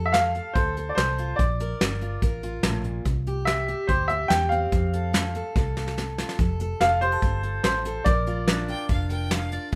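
A picked steel-string acoustic guitar with fresh, full-bodied strings and a dark, round, foam-muted electric bass open this heartfelt, nostalgic honky-tonk excerpt in F major at 144 BPM. Almost at once an upright piano takes the melody up front, its tone brilliant and woody, slightly detuned, with long sustain and the intimate sound of its action audible. Beneath it, a soft brush drum kit with a fat snare and punchy kick keeps a straight 4/4 classic country feel, and a drum fill at 5.6 seconds leads into a repeat of the opening section. The chords move from F through Bb and C and back to F, then shift to Bb near the end. At 8.7 seconds a single close, earthy fiddle slips in with a clear second line, its airy bow carrying a light vibrato, all set in a light reverb.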